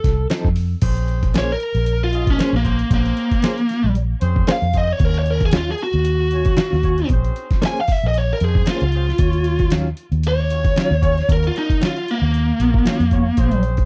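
A biting, overdriven lead guitar opens this brooding, mournful soul blues excerpt on an F7 chord, together with a dark, round, foam-muted fingered electric bass and a gritty, pitched-down sampler-style drum kit built on a thumpy kick, a medium-tuned snare, hi-hat and crash. The groove moves at 115 BPM in 4/4 in Bb minor, with a straight-eighth feel and a light sixteenth-note swing. At 0.3 s a bright electric guitar, recorded direct and compressed, adds clean stabs shaded with tremolo. From 0.8 s the lead guitar takes a solo over shifting Bbm9 and Ebm9 chords, while a warm horn section, tight and set low in the balance, holds sustained chords with vibrato, a smooth top and octave doubling. The bass, drums and lead sit up front in a dry, close 1970s-style studio sound, and the drums carry the character of being re-recorded in a large room.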